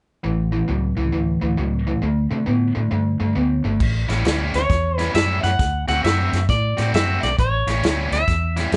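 A bright, overdriven picked guitar riff and a round, punchy, foam-muted fingered bass open this soulful, rollicking electric blues shuffle in A mixolydian at 134 BPM, swinging over A, D5, A7 and D7 chords. At 3.8 s a tight, roomy soul drum kit with dark cymbals joins, and at 4.6 s a twangy, slightly broken-up fingered guitar carries the melody up front. The band sounds as if it is playing live in one room with light reverb, in a passage cut from a longer piece.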